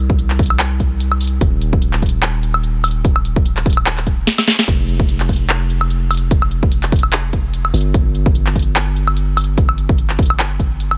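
A deep, sine-toned 808-style bass with a fast attack and long decay pumps under sidechain through this euphoric, playful future bass clip, joined up front by a punchy, layered electronic kick and a trap kit of handclaps, woodblock, bright hi-hats and a sharp snare, the drums set in a small-room reverb over a swung half-time feel, with a drum fill at 4.3 seconds.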